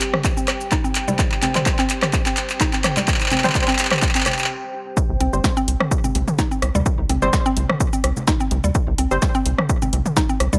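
A punchy analog drum machine and tape-warm electronic kick drive this sparse, quirky minimal techno excerpt in swung 4/4, joined by overdriven congas, rim clicks and toms, a woody mallet-like synth pluck riff with tape echo, muted filtered dub chord stabs whose filter sweeps through the build-up, and a moody ambient pad that ends at 4.5 seconds, before a brief break gives way at 5.0 seconds to a drop where a rubbery, bouncy square bass pumps up front.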